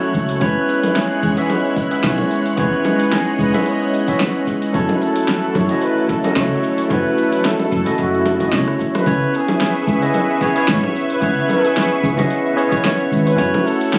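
A lightly swung sixteenth-note deep house groove of congas, metallic hi-hat, rim click, shaker and fat snare rides over a deep electronic kick in the background, with a round, woody fretless bass through lush chorus and a drum fill from 8.5 to 9.1 seconds leading into the second section. In this relaxed sunset chillout excerpt, a veiled, breathy bucket-muted trumpet sings an intimate melody with vibrato and tape echo, while a bright, up-front tine electric piano sweeps through a low-pass filter and a thick detuned unison pad with chorus and phaser holds chords moving from E6 through F#m7 to C#m7. An airy, wind-like noise texture drifts in the distance until 9.1 seconds, and the whole is heard as if captured on a phone in a studio room, compressed with digital ambience.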